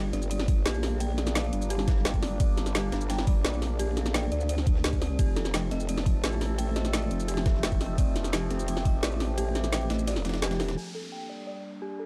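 A growling, wobbling bass and a slowly evolving, resonant sawtooth pad open this dark, futuristic slice of technical drum and bass at 172 BPM in G minor, already in the thick of a drop. The pad carries chorus and phaser, and the saturated, formant-filtered bass sits up front. An eerie, inharmonic FM bell arpeggiates above them with a warbling, vintage tape echo. From 0.5 seconds an overdriven, knocking electronic kick drives the groove. Alongside it, an up-front kit brings a woody snare and bright hats, while a very quiet, gritty, pitched-up jungle-style kit is layered underneath. The harmony moves from G minor to F, and after the kick has dropped out, the bass and remaining drums fall away at 10.8 seconds. That leaves the pad, a filter sweep on the bell and a brief downlifter under light reverb in a dark production.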